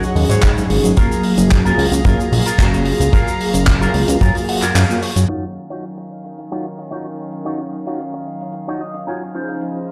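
A straight 4/4 groove at 111 BPM drives this sleek, groovy nu-disco passage in Eb dorian, cut from a longer piece. A tight, dry kick and a damped 70s drum kit with handclaps, hi-hat and shaker set the pulse in a small room ambience, while a fat, thick analog bass, sawtooth and detuned with tube saturation, sits up front until 5.3 seconds. Over this, a dark, round synth brass treated with chorus, phaser, delay and sidechain pumping carries the accompaniment, and a rich chamber string section with a reedy gut-string tone holds bowed chords that pump in the same way. An envelope-filtered electric guitar plays a bright, twangy picked riff through subtle chorus, a low-pass filter and delay, with clean guitar fills arriving near 4.2 seconds and again later. The harmony moves from Ab7sus4 through Gbmaj9 to Ebm9 and Dbmaj9, a band accent lands just before the second section, and a filter sweep runs through that half, all heard as if played on a big sound system in a bare stone room.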